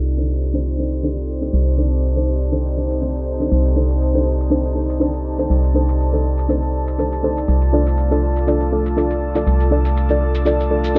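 Swung 16ths at 121 BPM in 4/4 drive this hypnotic deep house excerpt in C dorian, where a dark, hollow organ-like FM bass sits up front under deep, nasal chord stabs with tape echo from 0.2 s, a warbling, nostalgic lo-fi pad and an airy, breathy pad with chorus, a grainy shekere in the background and a very quiet analog-style electronic hi-hat, all under light reverb and a low-pass filter sweep as Cm69 moves to Dm/C at 7.5 seconds.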